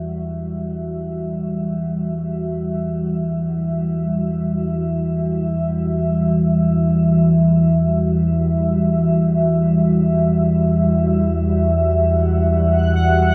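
Dark and unsettling, this short cut from a longer dark ambient drone piece floats in free time around a single Emadd9 chord. A deep, ominous drone rumbles beneath, its detuned, wave-folded tone sitting up front with a filter sweep across the full 13.3 seconds. Above it, a moody, full-bodied pad of sustained chords fades in gradually, its mellow unison voices thickened by chorus and a shimmer reverb. At 12.4 seconds a reversed, swelling texture appears high in the range, a dreamy, granular shimmer that brings the only bright colour. The production is dark and cloaked in a huge, wet reverb with a long nine-second tail, giving the sound a cavernous, enveloping depth.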